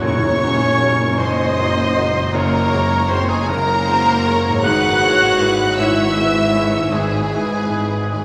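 A wet, reverberant church acoustic surrounds this tender, moving film-score fragment for orchestra, drifting in a rubato 6/8 at 52 BPM in Gb lydian as the chords move from Gbadd9 to E/G# at 4.6 seconds. Violins carry the melody high and close with smooth vibrato, while a second violin section, a distant clarinet and an oboe shape a second line, and French horns hold warm sustained chords over background violas, a clear baby grand piano with audible action noise, a mellow ringing harp, and cellos and double basses on the bass. A brief band accent opens the passage, with a dark, dry tam-tam sounding until 3.1 seconds and soft calf-headed timpani until 1.2 seconds.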